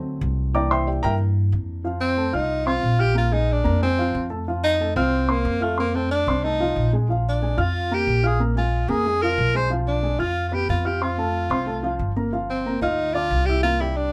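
Recorded live in one small room with moderate ambience, this danceable, sophisticated excerpt of Afro-Cuban jazz moves at a brisk 183 BPM in straight 4/4. A dark, mellow baby grand piano with audible action noise and short sustain takes a brief solo at the start, while a woody pizzicato upright bass with steel strings sits up front. At 2.0 seconds a breathy tenor saxophone enters as the up-front solo voice, playing with vibrato, subtone, scooped notes and a smooth top over changes such as F7, Bb9, Bdim7 and Gm7.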